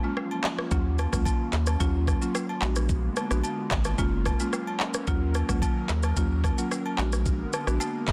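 A buzzing, woody marimba struck with medium mallets opens this mellow, sultry afrobeats excerpt in Eb minor, alongside an airy, breathy pad with a slow attack, detuned nasal edge and chorus shimmer. By 0.2 seconds a produced electronic afro-pop kit arrives up front, with a knocking kick, handclaps, rim clicks and shaker, its snare softly clipped, while quieter acoustic woodblock and agogo bells sit in a small room behind it. After a brief opening break, a round, deep analog bass with a fast attack and dark, sustained tone enters at 0.7 seconds and sits prominently in the mix. The straight 4/4 groove moves at 110 BPM over a looping progression of Gbmaj7, Ebm7 and Bb7b9b13, lending a lush, jazzy tension to the dry, dark marimba figures. The digital ambience and dense, heavily limited modern master give the short passage a polished, close-up sound.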